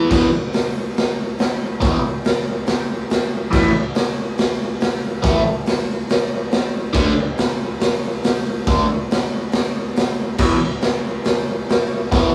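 A biting, overdriven electric guitar opens this rowdy, raw garage rock excerpt at 140 BPM, picking a double-tracked riff through a phaser over E5, A5, D5 and back to E5. A raw acoustic kit joins at 0.1 seconds with a punchy kick, a medium-tuned snare, hi-hat and crash, its gritty, saturated sound carrying a pumping stone-room ambience and a rolled-off top. Both parts sit up front in a rough rehearsal-room recording with warm saturation and moderate studio reverb, and the kit drops out at 12.2 seconds.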